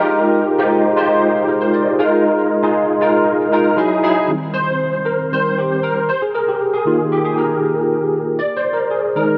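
A barky, bright tine electric piano plays alone up front through a combo amp, opening with a fill and taking a solo from 4.3 seconds in this glossy, urban pop fragment in Eb major at 117 BPM, its clean tone thickened by ensemble chorus and delay and set in a lush hall reverb as the harmony moves from Fm11 and Bb7sus4 through Emaj9 to settle on Eb6, Ebadd11 and Ebsus4.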